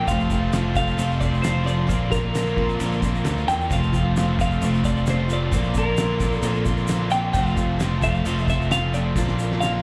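A bright, twangy twelve-string electric guitar carries the jangly, nostalgic melody over a full-bodied picked acoustic guitar, a biting double-tracked overdriven riff with slapback echo, a round, up-front fingered bass, a reedy accordion in the background, a grainy tube shaker and a cloth-damped, thuddy drum kit, all moving between F and Bbadd9 at 132 BPM in this folk and heartland rock excerpt heard as a live club gig through the venue's PA, with a drum fill closing it at 9.2 seconds.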